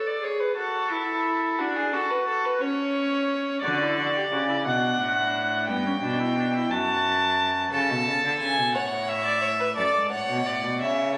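A close violin with an airy bow and a reedy, gut-string voice carries the melody, entering at 7.7 seconds as the viola drops away. This elegant, lively baroque-style fugue for string quartet is in D major, moving at 59 BPM in a straight 6/8 and tuned to A4 = 442 Hz. A dark, nasal second violin and a rich viola with light vibrato open the passage together, both played in period style and set at a distance, before a warm cello takes up the bass line at 3.6 seconds. The harmony moves from A through F#m, Bm and G before closing on D. The players sit in a moderate scoring-stage reverb blended with a club-like room sound, captured on a phone in the room, and the passage is cut from a longer piece.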